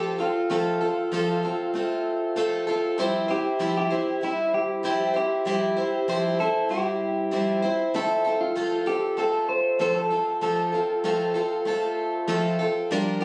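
Captured on a phone in a small club room with moderate ambience, this carefree, heartfelt pop excerpt at 97 BPM in F major pairs an up-front, boxy, shimmering, octave-doubled twelve-string acoustic guitar, picked as accompaniment, with a compressed, slightly broken-up electric guitar carrying the melody throughout as the harmony moves from F to C/F and back to F.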